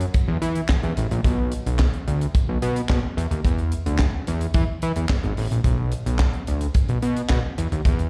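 A fat, saturated analog bass anchors this short slice of slick, late-night early-eighties boogie funk, its detuned sawtooth tone sustained and up front with a filter sweep and a fast attack. A tight acoustic funk kit plays alongside it throughout the 8.1 seconds, with a high-tuned snare, tight kick, hi-hat and handclaps set close in a natural small-room sound. The performance comes from a live gig heard through the venue's sound system with a touch of recital-hall reverb.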